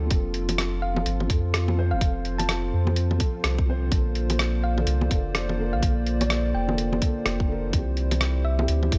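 A swung 4/4 groove at 126 BPM drives this rainy, wistful future garage passage, cut from a longer piece, with a tight, tape-warm electronic kick sitting up front beside a compressed, pitched-down, muffled sampler-style kit of bongos, hi-hat and rim click from 0.1 seconds. Beneath them a deep, round dub sub bass holds the low end, pumping with sidechain along with the other sidechained parts. A felt-muted upright piano plays soft, boxy accompaniment with audible action noise and tape echo, while a dark, nasal analog pad of detuned waveforms sustains chords with chorus and a gritty 12-bit sampler edge. From 0.8 seconds a tine-like, thumb-piano-style FM pluck carries the melody high above, its gentle decaying notes touched with chorus and tape echo. The harmony moves from F to Bbmaj7 to C, all wrapped in a light reverb.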